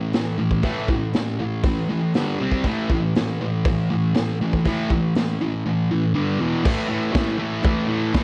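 Garage rock with a raw, swaggering mood at 120 BPM in a straight 4/4, cut from a longer piece and captured on cassette tape with moderate studio reverb. A thick, bright fuzz guitar, double-tracked and up front, drives a picked riff from the very start, moving through power chords on A, G, C and E and landing back on A at 6.7 seconds as a new section begins. The drum kit joins at 0.1 seconds with a medium-tuned snare, punchy kick, hi-hat and crash, its sound gritty, saturated and rolled-off at the top, as if played in a small room.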